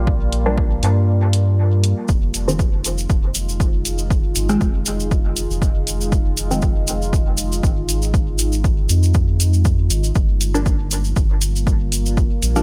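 Hazy and hypnotic, this dub techno excerpt in F minor at 119 BPM, with a light 16th-note swing, rests on a deep, detuned ambient pad drifting through chorus and sidechain pumping, a round, nasal analog bass with tube saturation, a punchy overdriven kick that drops out between 1.1 and 2.1 seconds, a tape-toned hi-hat, a grainy tube shaker entering at 2.1 seconds, and a muted, filtered dub chord stab soaked in phaser and dub echo that pauses from 6.7 to 10.5 seconds, all moving from Gm7 to Fm7 and back in a light digital ambience.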